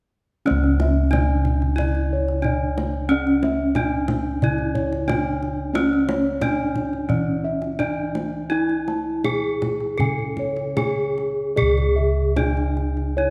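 Set in a straight 4/4 at 75 to 91 BPM, this Javanese gamelan passage in C# pelog moves with a stately, shimmering character and is cut from a longer piece. Up front, a bronze metallophone carries the melody, its bright, ringing horn-mallet strokes and paired tuning producing shimmering beats. Above it, a set of bossed gongs plays arpeggios with a round, airy tone and tape echo. Beneath them, another set of bossed gongs struck with padded beaters holds the bass, mellow, dark and smooth. A tight, vintage-sounding kendang adds band-limited percussion until 13.1 s, while a moderate recital hall reverb lends the ensemble space, and the music moves into a new section at 11.6 s.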